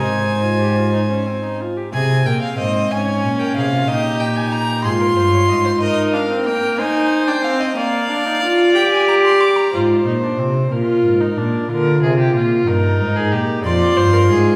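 Contemplative yet driving, this baroque-style fugue for string quartet moves in a straight 6/8 at 61 BPM in Ab major, with every player bowing in a gut-string period style. A nasal, airy-bowed first violin with light vibrato carries the melody over a distant, rich second violin. A reedy viola sits up front beside a dark, smooth-topped cello, which falls silent at 5.8 seconds and returns at 9.7, just as the melody drops away until 13.6 seconds. All of it is heard from further back in a recital hall with a wet, 1.8-second reverb.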